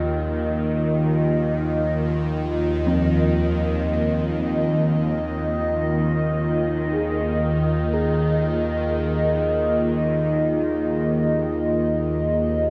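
Ominous and unsettling, this dark ambient drone drifts in free time, a 12.7-second passage cut from a longer piece that rests on a single Ebsus2 chord. Up front, a tense, string-like bowed drone built from detuned sawtooth layers with a noise component holds the low register, its slow attack, long release and vibrato shaded by phaser and its own reverb. Beside it, a deep, moody analog pad blends square, sawtooth and triangle waves with a sub octave, sustaining chords through chorus and phaser. In the background, a mellow, boxy baby grand piano with short sustain plays arpeggios through tape echo. A very quiet quartz singing bowl struck with a wooden striker adds a pure, ringing texture with slow beating. The dark, warm production sits in a huge, wet reverb with an 8.3-second decay.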